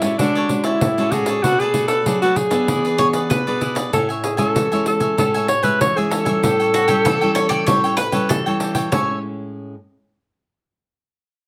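Closely miked and detailed in a moderate studio reverb, this lively, sunny samba-choro fragment is led by an up-front, mellow alto saxophone singing a vintage jazz-style melody with vibrato, subtone and scooped notes, over crisp picked cavaquinho, bright fingerpicked classical nylon-string guitar with audible finger squeaks, and a jingly, soft-handed pandeiro, while a double-strung bowl-back mandolin joins with a second line at 3.0 s.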